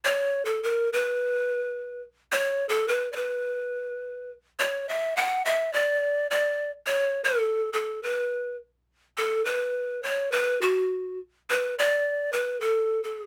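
Large cane pan pipes play alone, breathy and up front with a crisp, chiffy attack, lifted highs and an unsteady vibrato, carrying a festive yet wistful Andean folk tune in B minor at 105 BPM in a straight 2/4 within a moderate booth ambience, moving into a new section at 9.2 seconds in this 13.3-second cut from a longer piece.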